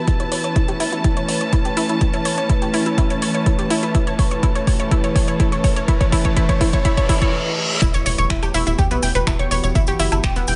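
A lightly reverberant, dark and cinematic melodic techno excerpt at 124 BPM, where an overdriven, up-front electronic kick and a layered deep house kit of finger snaps, metallic hats and woodblock, re-recorded in a large room, pulse under an evolving, morphing wavetable pad, lush, woody bowed strings played sul tasto with vibrato, and a round, detuned analog pluck arpeggio with dub echo, all pumping against the kick. Over an Aadd9/E chord, filter sweeps on the pluck and pad, a drum fill, a very quiet riser and a reverse cymbal build toward a brief break at 7.3 seconds. The drop lands at 7.8 seconds on E minor with an impact, as a tight, punchy sawtooth sequencer bass and a grainy cabasa in the background enter.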